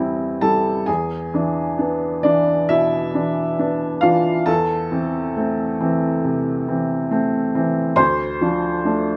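Intimate and reflective, this brief fragment of neoclassical minimalist piano drifts at a rubato 68 BPM in 4/4, tuned to A4 = 439 Hz: a solo upright piano, clear, woody and open with long sustain, sits up front in light room reverb as it moves from C/E through E7 and Am/E to Dm across a range of D2 to C6 over 9.2 seconds.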